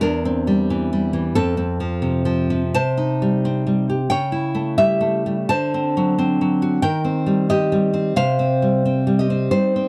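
A bright, up-front nylon-string guitar, fingerpicked in classical style, carries this melancholic, intimate romantic solo excerpt at a rubato pace, ranging from E2 to A5 over drifting harmonies that move from C/E through Am7b5/C, A7/C# and Eb6 to close on Cm, all captured in a dry, close 1970s-style studio sound with small-room ambience.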